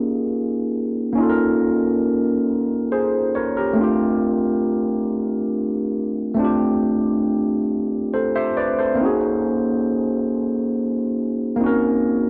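In a slow, straight 6/8 lilt, a lone overdriven tine electric piano, barky and gritty through a combo amp with a lush chorus, sits up front in a dry, close 1970s-style studio sound, moving from Eb9sus4 to G9sus4 at 3.8 seconds and Ab9sus4 at 9.0 seconds across this short cut from a longer late-night, yearning R&B piece.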